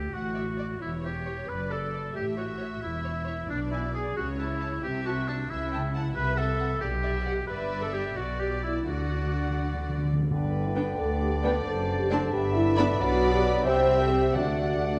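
In a rubato 6/8, this graceful and cheerful classical-period orchestral excerpt sets a veiled, con sordino violin melody over muted violas, cellos and double basses, with a second, closer muted violin line and a roomy, distant oboe alongside, a timpani fill from 8.9 seconds, and at 10.3 seconds a hollow flute, a background clarinet, a vintage-tinged bassoon and tight, mellow French horn chords joining, all set on a dark scoring stage.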